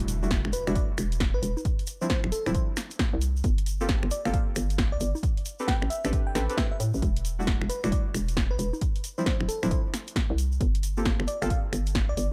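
A background electronic impact opens this moody, soulful two-step UK garage excerpt at 134 BPM in E phrygian, alongside deep, warbling chord stabs with chorus and dub echo, a hollow, bouncy FM bass up front, and a tape-warm analog drum machine of congas, finger snaps, hi-hat and punchy snare swung on the 16ths. These are soon joined by a grainy tube shaker, an up-front electronic kick and a sparkling, bell-like FM electric piano melody with chorus, tremolo and dub echo. Everything sits over minor-eleventh chords moving from Em11 through Dm11, Gm11 and Am11 in a dark, warm production.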